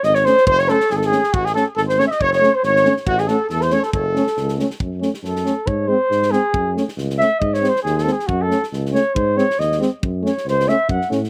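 A mellow flugelhorn opens this Balkan brass band piece with vibrato and a slapback echo, sitting up front over a distant, roomy tuba bass and a natural, small-room drum kit with a punchy kick and medium-tuned snare. The feel is a swung 2/4, bittersweet and restless, and it moves between F# minor and A chords before shifting to alternate F# minor with G#. Just after the start, a dark euphonium enters in the background, joined by a French horn with light vibrato, both playing classical-style accompaniment. A close-miked trumpet with a soft attack and its own slapback echo plays a second line from 0.5 to 4.5 seconds. From 4.8 seconds the flugelhorn carries a solo to the end of this cut from a longer piece. The sound is dry and open, recorded outdoors with little reverb.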